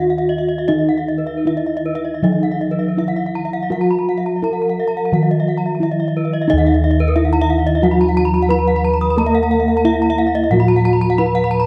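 Heard in a recital hall with a moderate reverb that lingers for 1.8 seconds, this dark-toned recording captures a shimmering, brilliant stretch of Balinese gamelan in Eb pelog, tuned a touch high with A at 441 Hz, moving in a straight 4/4 at roughly 76 to 90 BPM. The lead bronze metallophone carries the melody with padded disc mallets, its sound mellow and airy. Two more metallophones weave arpeggios above it: one struck with a wooden mallet gives a smooth, shadowed ring, while the other, also wooden-mallet and close-miked, sounds dry and full. Beneath them, bossed gongs hold the bass with padded beaters, their round, beating tones sitting up front in a boxy small-room sound. A fourth metallophone, entering at 0.7 seconds, plays a lower accompaniment with a horn mallet for a bright edge, and the paired tuning across the metallophones sets up the shimmering beats that define the texture as the passage moves into a new section at 6.5 seconds before the cut at 11.7 seconds.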